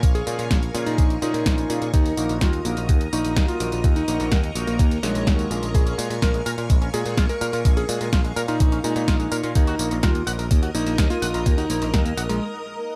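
A thumpy, sampler-style electronic kick sits up front in this nostalgic, danceable Italo disco excerpt. A punchy house drum kit adds layered snare, tambourine and warm, tape-tinged hi-hats, while a bright, growly picked electric bass drives the low end. A warm electric grand piano carries the melody with a vintage tone, a clangy low end and a touch of delay, over lush string-machine chords coloured by phaser and ensemble chorus. A glossy, chorused polysynth plays retro stabs until 6.0 seconds, and from 5.7 seconds a twangy, scooped electric guitar runs an envelope filter through picked arpeggios with delay. The mix is dry, with the chords moving from Bbm7 through Ebm and back to Bbm7 before settling on an Eb5 power chord, ahead of a short break at 12.4 seconds, where only the strings ring on.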